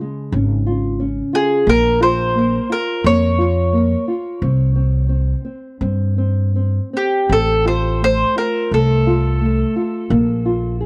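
A picked mandolin with doubled strings and a round, up-front tone carries the melody of this mournful, passionate fado-style ballad, entering at 1.4 seconds with a touch of tape echo. Beneath it, a small-sounding nylon-string guitar, thumb-plucked with audible finger squeak, and a woody upright bass played pizzicato on steel strings move freely in a rubato 4/4 through chords such as Db, Bbm and F/A. The dry, close sound recalls a 1970s studio, and the passage is cut from a longer piece.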